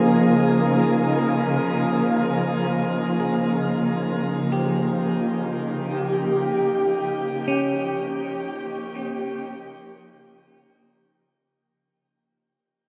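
In free time, this ambient fragment, cut from a longer piece, drifts in a spacious, melancholic haze, tuned to A4 = 440 Hz. Up front, a shimmering pad holds sustained chords from Db3 to Ab4, its ethereal tone built from triangle and sine waves that are wave-folded, with an octave-up shimmer, a slow attack, a long release, granular texture, chorus and its own reverb. Behind it, a clean, dark semi-hollow electric guitar plays fingered arpeggios between Db4 and Ab4, fading in and trailing through a diffuse ambient delay until it stops at 8.1 seconds. The harmony moves from Bbm7 to Eb9 and then to Eb9 over Db. A wet shimmer reverb with a 7.8-second decay fills the room, and the piece fades out from 6.3 seconds onward.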